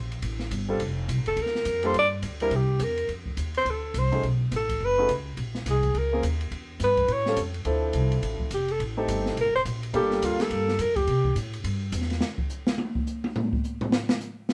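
Small-group swing and bop jazz in F major at 210 BPM, swinging and sophisticated, this cut from a longer piece opens with woody, thumpy pizzicato upright bass on gut strings and the dark, boomy open drum kit with its medium-tuned snare, joined by a polished grand piano with long sustain comping through rich changes, while a breathy alto saxophone with subtone, light vibrato and scooped notes solos up front from 1.3 seconds, before the drums take a short solo at 12.2 seconds, all captured live in one room with light reverb.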